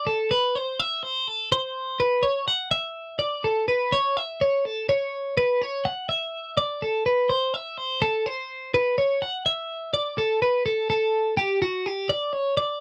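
Set in a straight 7/8 at 249 BPM counted in eighths, this wistful, bright rock fragment features a lone twelve-string electric guitar playing solo from 0.0 to 12.8 s, picked cleanly between F#4 and F#5 with a compressed, twangy ring. The guitar sits up front in a dry, close, 1970s-style studio sound with little reverb, and a new passage arrives at 10.7 s before the cut ends.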